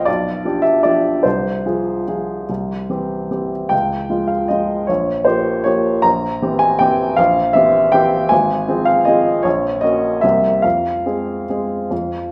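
Wistful and nostalgic, this classical piano waltz in F minor moves in 3/4 with a rubato feel, its tempo drifting between 138 and 167 BPM, and the tuning sits at A4 = 437 Hz. A solo upright piano, woody and intimate with audible action noise, is placed up front and spans Ab1 to Bb5 against a wet recital hall reverb, playing throughout from 0.0 to 12.3 seconds. The harmony opens on G7/B, passes through Db and Gm7b5/Bb, and resolves from C7 to Fm at 10.6 seconds in this fragment cut from a longer piece.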